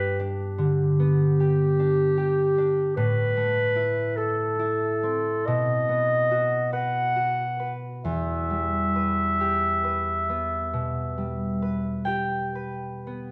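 A moderate recital-hall reverb gives this short romantic classical duo in E minor a roomy, concert-hall sound, its slow 12/8 pulse of 38-51 BPM in dotted quarters moving with rubato and a yearning, solemn mood. A mellow, somewhat distant clarinet sings the melody up front, while a bright, ringing, fingerpicked concert harp accompanies through G, A minor and B before settling on E minor. The clarinet stops at 12.0 seconds, leaving the harp alone until 13.3 seconds.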